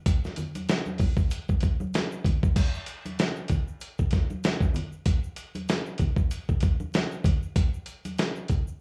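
Hip hop with a smooth, relaxed feel and a swung sixteenth-note lilt, this short cut from a longer piece centers on a dusty, gritty soul-sampler drum kit with a thumpy kick, fat snare, hi-hat and crash, compressed and tape-warm up front, re-recorded in a large room. Egg shaker and congas sit beneath it, bright, acoustic and close, while the rough home-demo mix carries vinyl crackle and light reverb, shifting into a new section at 2.6 seconds.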